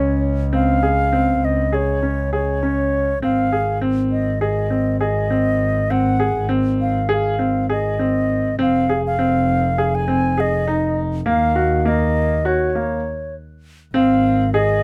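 Close, detailed microphones and a nearly dry room put every part up front in this pensive yet urgent contemporary chamber piece in 9/8, moving at 201 BPM in eighths. A wooden-toned baroque flute with vibrato and a crisp attack carries the melody over clear, slightly worn piano arpeggios with long sustain, while a single bowed double bass plays sul tasto with a soft attack and a warm, floating, pure tone. The harmony moves from Dbmaj7 through Ab, Fm7 and Ebm7, and the ensemble breaks off in a stop from 13.1 to 13.9 seconds before landing on Ab, the passage cut from a longer work.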